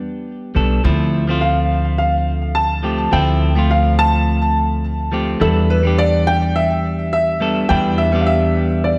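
Smooth and relaxed, this sunset chillout excerpt moves at 105 BPM in 4/4 with a gentle sixteenth-note swing, settled in D dorian. A clean, twangy electric guitar opens alone, picking chords through digital delay, and an upright bass joins at 0.6 seconds with a woody, thumpy pizzicato tone on steel strings. At 1.4 seconds a dark grand piano takes the melody between A4 and A5, its mellow, worn and boxy voice carrying audible action noise, short sustain and its own digital delay. The harmony settles from a rootless Em7 into Dm7 before returning to Em7 at 5.4 seconds. All three parts sit up front in a dark, warm production, framed by a lush hall reverb that lends an intimate yet spacious glow as the cut drifts on from a longer piece.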